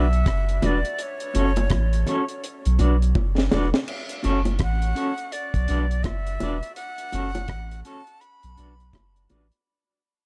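A dark, warm production set in a small room frames this short, meditative roots reggae cut from a longer piece, its laid-back 4/4 groove carrying a gentle sixteenth-note swing. A soft dub sub bass sits up front, round and deep with a sustained tone, beside a dry, acoustic reggae drum kit whose tight kick, high-tuned snare, rim clicks, hi-hat and crash cymbal have a smooth, rolled-off top. A fingered, clean semi-hollow electric guitar supplies hollow-bodied accompaniment through tremolo and tape echo, while low-tuned bongos join at 0.6 seconds with a round presence. Above them, a breathy jazz flute carries the melody with a crisp, chiffy attack, vibrato and its own tape echo. The harmony rocks between Bm and F#m, a drum fill arrives at 3.2 seconds, and from 3.9 seconds the music fades out to the end.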